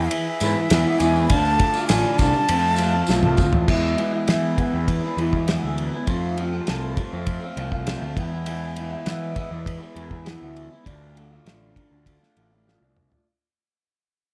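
A twangy, slightly broken-up electric guitar riff through a small old amp sits up front with a phaser, driving this dark, mysterious psychedelic rock piece at 100 BPM in E phrygian dominant. A breathy, unsteady flute with vibrato and digital delay carries the melody until 3.4 seconds, over a reedy harmonium in the background, a punchy fuzz bass and a dry, damped 70s drum kit with a fat snare and tight kick, while a jingly tambourine adds color early on. After a drum fill, the music moves through E, F and Dm chords as it fades out from 3.7 seconds, closing on another fill cut from a longer piece.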